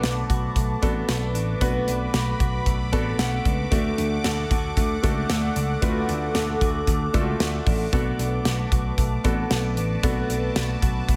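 From the opening second, a punchy, up-front slap bass and a polished studio drum kit with a punchy kick, snare and hi-hat drive this uplifting, glossy 1980s-style pop excerpt at 114 BPM in 4/4, while a brilliant concert grand piano adds accompaniment with a short fill at 2.7 seconds, a swirling, detuned sawtooth pad sustains phased and chorused chords, and a clean, compressed electric guitar riff sits in the background under subtle chorus and diffuse ambient delay, all moving between Bm7 and D in a dreamy mix soaked in plate reverb.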